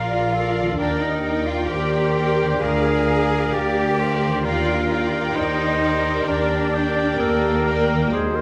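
Unfolding in a rubato 4/4, this melancholic, elegiac classical fragment sets a lush violin section melody in the distant background over a second violin section, a pure concert flute and a soft-attacked solo oboe, while a very quiet viola section accompanies, a mellow French horn section holds sustained chords, a ringing fingerpicked harp plays arpeggios, and clear, focused cello and double bass sections carry the bass, the whole ensemble set in a wet scoring-stage reverb.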